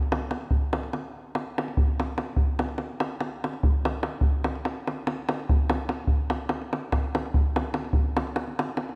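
A tight, acoustic davul sits close and up front, carrying this short Balkan folk excerpt entirely on its own from 0.0 to 8.9 seconds. The music moves in 9/8 at 291 BPM counted in eighths, with a straight feel that gives the drumming a virtuosic, restless drive. A moderate reverb, like a large scoring stage with a 1.8-second decay, surrounds the drum with a sense of space. The piece opens with one section that runs until 7.9 seconds, then moves briefly into a new section before the cut. Cut from a longer piece, it offers a brief, concentrated glimpse of percussive energy in an odd metre.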